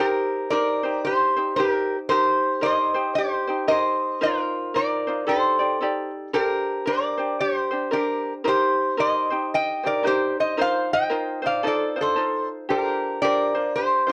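A lap resonator guitar carries the melody up front, its slide tone metallic and nasal as it is played with fingerpicks. This is a dreamy, relaxed Hawaiian piece in 4/4 with a gentle swung lilt, heard here as a short cut from a longer performance. A light, fingerpicked ukulele sits up front as well as accompaniment, and both instruments play together throughout the 14.1 seconds. The harmony drifts through soft, colorful chords such as F7sus4, Cm7 and Bb69 before settling back home near 12.7 seconds. The whole recording has a worn, old-cassette quality, with warbly pitch drift and a touch of light reverb that adds to its hazy charm.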